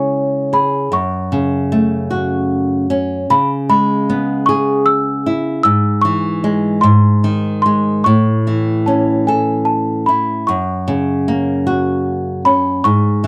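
Dreamy and gentle, this children's lullaby sways in a lilting 6/8 with a loose, rubato feel, and is cut from a longer piece. A small celesta carries the high melody with delicate, bell-like tones from soft felt hammers, while an up-front flamenco guitar, fingerpicked and acoustic, supplies the accompaniment underneath throughout the 13.3 seconds. The close, dry 1970s-style studio sound is touched with light reverb.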